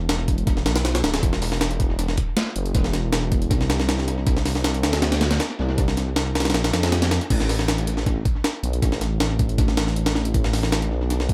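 A dark, detuned sawtooth bass opens this frenetic, raw drum and bass excerpt in A minor at 158 BPM, rumbling deep and beating as it sustains up front. From 0.1 s a gritty, compressed breakbeat kit joins with a thumpy kick, high-tuned snare, hi-hat and crash, its tape echo feeding an echo-heavy mix with light reverb. The drop runs through to a fresh start at 7.3 s.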